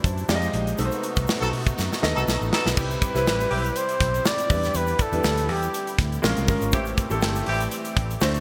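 Polished 1980s jazz-funk pop with an urban, bittersweet mood at 121 BPM, built on an intimate grand piano with a hint of chorus and audible action noise, a dark, round fingered electric bass, a tight, up-front drum kit with gated reverb, a grainy egg shaker and a shimmering musette accordion holding chords in the background, as a distant horn section with digital delay enters at 1.4 seconds, a drum fill and band accents lead into a Cmaj7 at 2.8 seconds, and a breathy flugelhorn with vibrato carries the melody from 2.5 to 6.0 seconds in a bright, lush hall.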